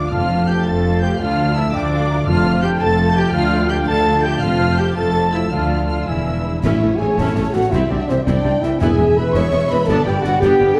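Heard through a spacious concert-hall reverb with a dusky production, this heroic, adventurous film-score cue moves at 111 BPM in a straight 6/8. Lush, expressive violins carry the melody over a second violin line, airy flutes, clear violas, mellow sustained French horn chords, ringing harp arpeggios, and a rich bed of cellos and double basses. Distant, dark trumpet stabs and hard-mallet timpani drive the opening in F major until the music lifts into A major at 6.6 seconds, where the trumpets fall away and a tuba joins with snare drum, clash cymbals and bass drum in the background.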